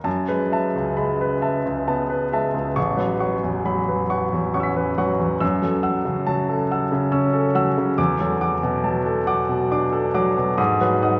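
A clear concert grand piano, intimate and up front with audible action noise, deep bass and long sustain, plays a wistful, mysterious impressionist classical solo in F# minor at a rubato 68 BPM in 3/4, moving through F#m11, A69, F#m7 and E9sus4 before reaching Abm7 at 10.6 seconds, all set in a wet church reverb with a 3.6-second decay in this brief cut from a longer piece.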